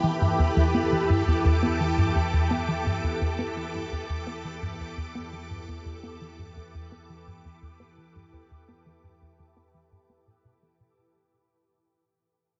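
Ambient, sequencer-driven space music in E minor at 85 BPM, this expansive, mysterious fragment from a longer piece rests on a single E minor chord and fades out across its full 11 seconds. A plucky analog bass carries the riff from E2 to B3, its punchy, funky tone shaped by a fast filter pluck and a mellow decay, colored by subtle chorus, cassette tape and analog delay. Above it, a bright, up-front string machine holds sustained chords from E3 to D6, its swirling vintage sound set in motion by ensemble chorus and phaser. A very quiet, warbling analog drone sits on E2 from 0.8 seconds, slowly evolving with pulse-width modulation and a long release. In the background, a bubbling, resonant texture steps randomly through its filter between G4 and B4, bathed in chorus and its own reverb. The whole mix is dreamy and soaked in a huge ambient reverb with an 8.1-second tail, with nothing above 8.0 kHz.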